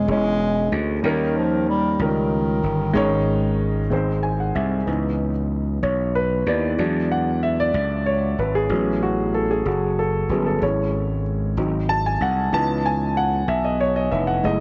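A gritty, growly slap bass with punchy overdrive anchors this soulful, solemn slow gospel excerpt in a straight 6/8, sitting up front beside an intimate concert grand piano whose action noise and deep low end are plainly audible. A present, classical-style bass clarinet carries the melody over the piano and bass until 4.2 seconds; as its phrase closes, the piano adds a brief fill from 3.9 seconds and takes over as soloist from 4.9 seconds. Light reverb gives the close, natural sound a touch of space as the harmony moves through rich seventh and sixth chords.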